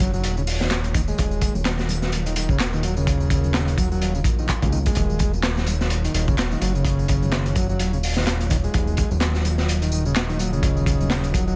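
A crunchy breakbeat drum kit sits up front in this raw, energetic breakbeat excerpt, its saturated, gritty hits carrying a tight kick, a medium-tuned snare and a rolled-off top with a swung 16th feel, joined by electronic tambourine and handclaps re-recorded in a small room and very quiet, distant congas with a bright, thin-skinned tone. A fat, detuned analog bass with ring modulation and a filter sweep holds the low end up front, while a vintage combo organ plays a clean riff with light vibrato and digital delay. Behind them, a deep, moody ambient pad sustains an Ebm9 chord with chorus, sampler grit and sidechain pumping, all inside a small room reverb across the 11.6 seconds.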